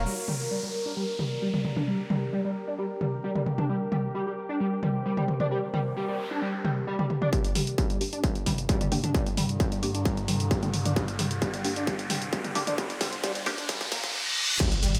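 A straight 132 BPM pulse drives this hypnotic, dark peak-time techno clip, where a screaming, guitar-like overdriven sawtooth lead carries the riff through a phaser, delay and filter sweeps over a deep, moody detuned ambient pad with chorus and reverb, while crash and ride cymbals, hats, shaker and toms pump with sidechain and gated reverb before a distorted electronic kick lands at 7.3 seconds to start a build-up that brings in muted, detuned dub chord stabs, an eerie, metallic inharmonic FM drone in the background, a riser from 9.0 seconds, a drum fill and a reverse cymbal, framed by a noise sweep, downlifter and an impact at 14.6 seconds, while a round sine sub bass surfaces briefly at the very start and end, all in a bright, 1980s-style digital production with light reverb.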